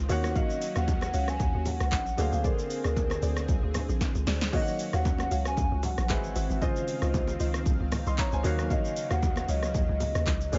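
A clear baby grand piano, a smooth analog pad with chorus and a hollow, bouncy log drum bass open this late-night, hypnotic amapiano excerpt, moving through chords such as Ebm9, Bb9/D and Dbmaj9 with a lightly swung feel. A layered deep house kit with a deep kick and punchy snare sits up front beside the bass, while vintage bongos and congas and a soft, round pluck stab with delay sit in the background, and a drum fill lands at 4.0 seconds. Alongside them a woody, clarinet-like synth lead with vibrato carries the melody from 0.3 seconds, all set in a digital ambience.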